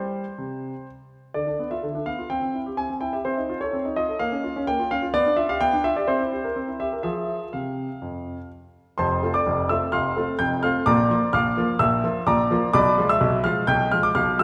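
In a straight 4/4 pulse, this playful, graceful classical-period sonatina passage for solo grand piano sounds clear and intimate, with audible action noise and long sustain set up front in a wet church-like reverb, moving through minor-tinged harmonies before settling into a brighter major passage at 9.0 s, as a fragment cut from a longer piece.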